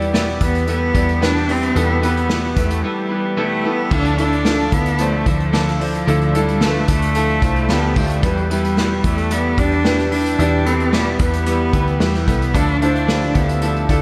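A bowed solo cello carries the melody up front, its focused, slightly boxy tone shaded with vibrato and a touch of delay, in this earnest, bittersweet piano-driven pop passage cut from a longer piece. Beneath it, a polished concert grand with deep bass and short sustain shimmers through a lush chorus, while a bright, twangy twelve-string electric guitar plays a picked riff in the background and a foam-muted vintage bass adds a round, dark low end. An acoustic drum kit played with bundle sticks, a tight kick and dark cymbals drives the groove as the harmony moves between Em and Dmadd9, and the whole mix is soaked in a dreamy hall reverb.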